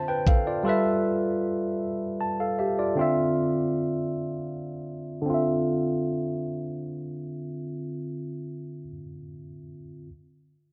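A barky, bright tine electric piano, clean through a combo amp and placed up front with a subtle chorus, plays late-night, yearning R&B accompaniment in D dorian at 52 BPM in a straight 6/8, moving from Dm9 to G13 and back to Dm9 under light reverb and a low-pass filter whose sweep runs from 0.0 to 5.3 seconds in this short cut from a longer piece.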